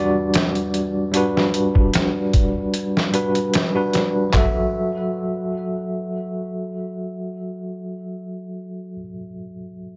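A bell-like tine electric piano with tremolo and tape echo opens this melancholic, cinematic trip hop excerpt at 75 BPM over a very quiet, detuned analog pad, while a gritty, pitched-down sampler-style drum kit with a thumpy kick joins at 0.3 seconds and drops out around 4.5 seconds as the harmony moves from Gmaj7 to F#m7, leaving the piano alone in light reverb until 10.0 seconds.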